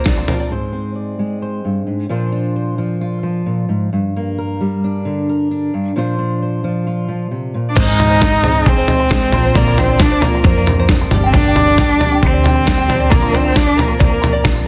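A dense, heavily limited mix with light small-room ambience carries this uplifting indie folk excerpt at 133 BPM in Bb mixolydian, where an auditorium-toned fingerpicked steel-string acoustic guitar plays alone from 0.5 s before the arrangement builds at 7.8 s around a gritty, overdriven sampler-style drum kit with a thumpy kick, a nasal, boxy bowed cello melody full of vibrato and portamento, a distant, reedy fiddle second line, a shimmering octave-doubled twelve-string acoustic guitar, plunky open-back banjo arpeggios, a round, dark hollow-body electric bass and a jingly, bright tambourine.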